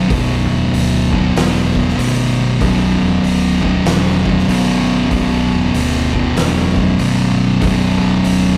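A rough rehearsal-room recording with light reverb captures this sludgy, hypnotic stoner and doom metal fragment at 96 BPM with a swung 4/4 feel, sitting on B minor as one dark, picked fuzz guitar riffs up front and a second one riffs in the background, while a growling fingered electric bass adds overdriven, punchy low end and an oversized low-tuned acoustic kit, entering at 0.1 seconds, pumps in a bright stone room with a fat snare, boomy kick and hi-hat.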